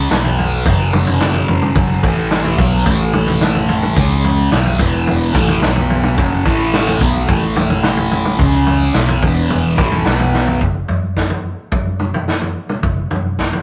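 A doubled, fuzz-drenched guitar riff with a phaser sits up front in this hypnotic, trippy psychedelic rock excerpt, circling F# minor chords against power chords over a straight 4/4 groove. Punchy, up-front vintage drums and a dark, round, foam-muted bass hold the bottom, while a fat, very quiet tonewheel organ with key click and slow rotary sustains chords underneath. After a drum fill at 10.3 seconds, guitar and organ drop out at 10.6, leaving bass and drums alone in a rough rehearsal-room sound with tube saturation and light reverb.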